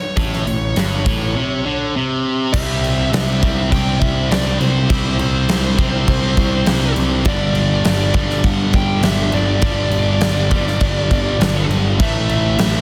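Hard rock at 102 BPM in a straight 4/4, this short cut from a longer piece has an energetic, swaggering attitude. A dark, high-gain lead guitar opens the recording at 0.0 s with a picked melody between C5 and G5, colored by distortion, plate reverb and analog delay, and it sits a little behind the other parts. From 0.2 s a bright, double-tracked rhythm guitar drives a picked riff up front, joined by a growly, fuzz-soaked electric bass holding down the low end between G1 and C2. A huge arena drum kit with a punchy kick, fat snare, hi-hat and bright crash cymbals rings in a hall-like space. The chords move from A to C at 2.5 s, where a second section begins, then shift to G5 and finally A5 at 12.0 s. The mix carries light reverb overall and a dense, heavily limited modern master.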